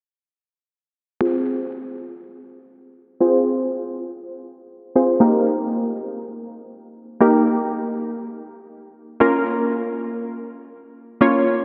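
Analog pluck, round and detuned with a sawtooth edge and a noise layer, plays alone and up front from 1.2 to 11.6 seconds in this free-time pop fragment, its fast-attack decaying notes carried through chorus, tape echo and a filter sweep over Fm, Eb and Bbm, all bathed in a long plate reverb that gives an energetic, confident passage a dreamy haze.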